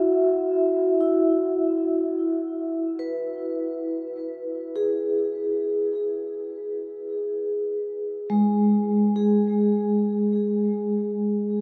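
Ambient and in free time, this melancholic, serene excerpt features a solo vibraphone played with soft mallets, its mellow, ringing tone shimmering with medium motor vibrato and trailing a diffuse ambient delay up front in a huge, wet reverb, drifting from Esus2 to G#m and settling on G#5 at 9.3 seconds.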